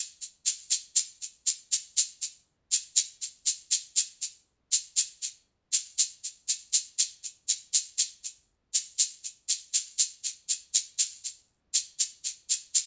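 A dry, live-in-the-room sound with little reverb frames this short cut from a longer bossa nova piece, where a grainy, bright egg shaker sits close and up front from 0.2 to 12.9 seconds, setting a relaxed, sunny mood over a straight 4/4 groove.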